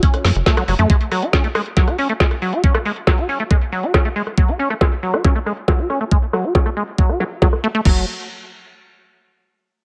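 An overdriven, knocking electronic kick and a drum kit with a woody snare, metallic hats, rim click and crash open this intense, driving psychedelic trance excerpt at 138 BPM in F# minor, together with a squelchy, resonant acid bass riff with chorus, digital delay and sidechain pumping. A filter sweep runs over the drums, while a tight, wave-folded sequencer bass with a sawtooth filter pluck punches in from 0.2 to 0.9 seconds and returns at 7.9 seconds as the harmony falls away. The sound is dry and up front, cut from a longer track.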